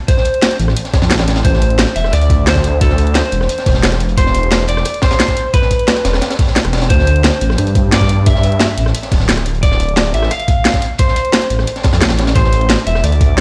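Liquid drum and bass with a dreamy, rolling mood, heard as a cut from a longer piece in straight 4/4. A dark, slightly broken-up electric guitar carries the picked melody, trailed by digital delay, over chords moving from a rootless Dm7 through Amadd9 and D7sus2 to Am. The drums stack three layers. An up-front, thumpy, sampler-style kick briefly drops out at 6.6 seconds. An overdriven electronic kit brings a cracking snare, bright hats and rim clicks. A quieter acoustic breakbeat kit from a small room adds a high-tuned snare and hats that sound saturated, smooth and rolled-off. From 0.6 seconds a menacing detuned sawtooth bass swells in, evolving through a filter swell with a sustained, saturated tone. The mix sits in light studio reverb and sounds as if played on a big sound system in a bare stone room.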